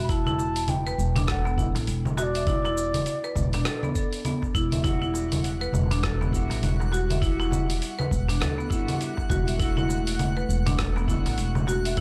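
A swung 16th-note groove at 101 BPM in 4/4 drives this meditative, earthy organic downtempo excerpt in E minor, where a dusty, compressed sampler-style kit of congas, hi-hat, rim click and shaker sits up front beside a thumpy electronic kick, a woody pizzicato upright bass with tube saturation anchors the low end, bright rosewood marimba arpeggios ring through analog delay, a clay-shelled darbuka played with hard hands stays in the background, a pure, distant bansuri with vibrato and tape echo sings only until 3.9 s, a dark, clean fingered electric guitar with subtle chorus and sidechain pumping enters at 4.8 s, and a twinkling granular shimmer joins at 5.3 s, in a dry, gritty hardware recording.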